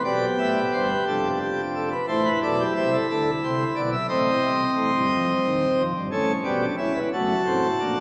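A wet church reverb with a long 3.2-second decay surrounds this recording, heard from further back in the room with a small speaker sound. It is a short cut from a longer classical work, a baroque-style four-part fugue for solo pipe organ in 12/8 at 59 BPM counted in dotted quarters, with a straight feel. The organ plays alone from 0.0 to 8.0 seconds on a full plenum with mixtures, its brilliant, romantic voicing sitting up front and spanning Eb1 to A5. The mood is solemn and contemplative. The harmony moves from B diminished through A minor and A diminished to A7, then arrives at D7 over F# at 7.1 seconds.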